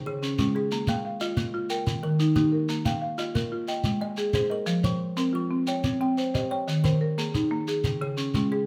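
Hypnotic and trance-like, this short excerpt cut from a longer piece draws on southern African traditional music, built on an mbira-style interlocking cycle in Bb dorian at 120 BPM in a straight 12/8. A buzzing marimba struck with medium hard mallets carries the arpeggios up front, its hardwood bars sounding woody and boxy with a dry, warm buzz. A kalimba shares the same arpeggiated range from Db3 to G5 a little further back, its thumbnail plucks short, bright and hollow. A grainy, compressed shekere sits close, adding a saturated yet mellow rustle of percussion. The harmony cycles through Db, Bb5, Eb, Ab, F5 and Cm, and a wet studio reverb gives the whole a modest sense of space.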